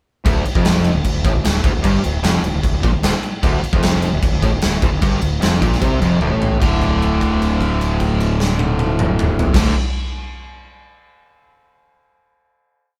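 A huge, punchy arena drum kit powers this driving, heavy hard rock piece at 151 BPM in D minor, with a bright, overdriven electric guitar and a hollow-toned semi-hollow guitar in the background picking a single-note riff over a growly fuzz bass that doubles it in eighth notes, all played live in one room with moderate reverb until a drum fill at 6.2 seconds leads into a final held D5 chord at 6.6 seconds.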